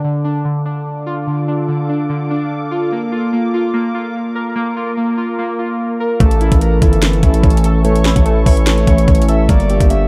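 Trap-style hip hop at 146 BPM in a half-time feel, dark and menacing in D harmonic minor, opens with warbly, nostalgic lo-fi synth keys arpeggiating through phaser and digital delay over a deep, moody ambient pad, until at 6.2 seconds a knocking trap drum kit with metallic hats, a saturated, aggressive 808-style bass, a mellow tine electric piano in the background and a breathy flute-like synth lead with vibrato all enter across a Dm, Bb, A, Gm progression in this cut from a longer piece.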